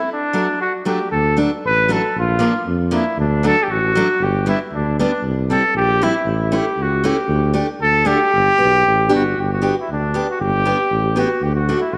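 A punchy, vintage-toned trumpet opens this jolly alpine folk excerpt, playing the melody up front in a classical style. A bright, picked steel-string acoustic guitar joins at 0.3 seconds with an accompaniment that carries a touch of finger squeak and an auditorium sound, and a mellow, close-miked tuba enters at 1.1 seconds with a bass line marked by light vibrato. At 117 BPM in a straight 2/4 and set in G major, the alpine dance band feel is bouncy and cheerful. The harmony moves through D, Bb, G, C and A, touching Dsus4 and Gadd9 before settling back on D, with a second section arriving at 9.4 seconds. A wet echo chamber reverb with a 2.0 second decay gives the recording a roomy, spacious glow.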